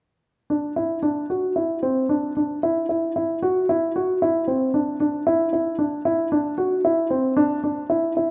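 A straight 5/4 pulse at 114 BPM carries this short contemporary instrumental fragment, cut from a longer piece. A single grand piano plays arpeggios from 0.5 to 8.3 seconds, staying in a close span from C4 to F#4. The instrument sounds dark, mellow and worn, placed up front and intimate, with its action noise clearly audible beneath the notes. A moderate scoring-stage reverb with a 2.0-second decay gives the piano a sense of space around it. The mood comes across as playful and hopeful despite the shadowed tone of the instrument.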